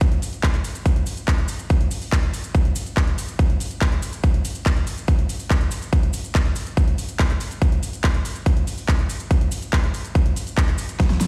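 A dry, punchy mix heard as if blasted over a big sound system in a bare stone room, this trance excerpt drives along at 142 BPM in a straight 4/4 with a hypnotic pull. An overdriven, layered electronic kick sits up front, joined by a big-room dance kit of handclaps, hi-hat and a huge, overdriven snare, while a grainy, bright cabasa rattles in the background. The groove runs as a single section from the start until a drum fill at 11.0 seconds, just before the kit and cabasa stop at 11.3 seconds.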